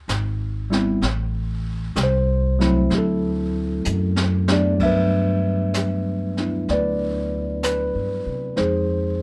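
Romantic and late-night in mood, this jazz ballad moves at a slow 64 BPM in 4/4 with a swung eighth-note feel in G major, a short cut from a longer piece. Upright bass and a brushed jazz kit begin together at 0.1 seconds. The pizzicato bass, on steel strings, sounds woody and sits up front, while the drums blend brushed snare, hi-hat, ride, a high-tuned snare, a boomy kick and dark cymbals with a rolled-off top. A worn, slightly out-of-tune tine electric piano enters at 0.7 seconds, mellow, clean and direct, placed forward in the mix as the accompaniment. The harmony travels from E through Am and D7, then a drum fill at 3.9 seconds leads into a new section resting on Gmaj7 before turning to Fm7, all in a dry studio room with little reverb.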